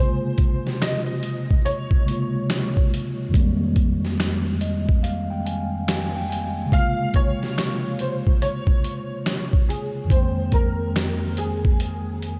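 A dreamy, reverb-soaked haze hangs over this melancholic lo-fi hip hop fragment at 71 BPM with a swung feel, where a woody upright piano carries the melody through chorus and analog delay above a mellow tine electric piano that accompanies up front on Bbm9 and Fm11 and plays a fill from 4.2 to 6.7 seconds, while a gritty, compressed boom bap kit of thumpy kick, snare, hi-hat and finger snaps enters at 0.4 seconds.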